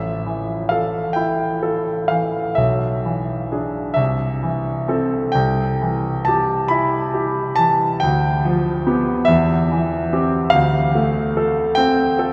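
A solo concert grand piano opens this mournful romantic nocturne fragment, its clear, polished tone and deep bass set up front while the short-sustained notes bloom into a vast, echoing cathedral reverb. The playing moves slowly and freely in rubato over a compound metre, drifting through melancholic harmonies that pass from E7/B and Am/C toward G7/D and a closing Dm7 by 10.5 seconds.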